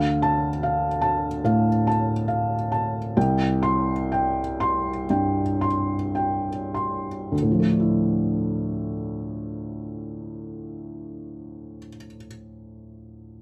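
The recording is dry and close, with detailed microphones placing a felt-muted upright piano up front, where the audible noise of its action is part of the sound. This is a short fragment of neoclassical minimalist piano in 4/4, played solo with a rubato feel and a reflective, melancholic mood. The piano's tone is soft, dark and boxy, its mellow, intimate voice reaching from low in the bass up into the upper register. The opening passage gradually slows over its first 7.3 seconds before a second passage begins and carries on to 12.0 seconds. The piano keeps sounding until the fragment ends at 13.4 seconds.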